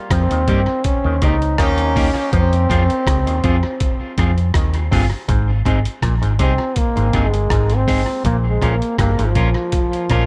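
Warm and laid-back, this roots reggae passage in Ab major sits at 81 BPM in 4/4, cut from a longer piece and bathed in an echo-heavy mix with light reverb. A gritty, pitched-down sampler-style drum kit with a thumpy kick, hi-hat and rim click sits up front alongside a dark, round, foam-muted fingered bass, while a bright, twangy auto-wah clav riffs in the background and a slightly broken-up picked electric guitar enters at 0.5 seconds with tape echo. A distant, roomy horn section adds a second line only until 2.1 seconds, and a clear, present trombone with light vibrato and scooped notes carries the melody throughout, stepping into a solo from 5.3 seconds over chords moving from Ab to Bbm.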